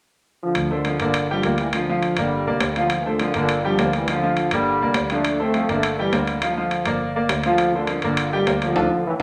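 Salsa at 205 BPM, this passionate, driving fragment sets a mellow, punchy trombone section carrying the melody with light vibrato over a bright, brilliant baby grand piano, a round, foam-muted fingered electric bass and ringing metal-shell timbales, all in a roomy studio reverb as the chords alternate between Dm7 and Gm, before a timbale fill and band accent land at 8.8 seconds.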